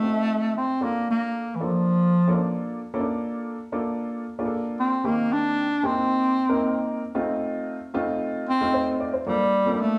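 A straight, steady pulse in four carries this uplifting soul fragment, cut from a longer piece. A clear bass clarinet takes the melody as a jazz-style solo, close-miked and up front, its vibrato and scooped notes giving the line a singing, personal quality. Beneath it, a dark upright piano plays the accompaniment, mellow and woody, slightly detuned and worn, with long sustain and audible action noise that make it feel intimate. Both parts play throughout, moving through a gentle progression that opens on F7, settles on Bbmaj7 at 0.8 seconds, shifts to Cm7 at 5.0 seconds, passes through F7 at 7.2 seconds and returns home to Bbmaj7 at 9.3 seconds. The sound is that of a band playing live in one small room, wrapped in a wet studio reverb that lends the whole performance a glowing, warm air.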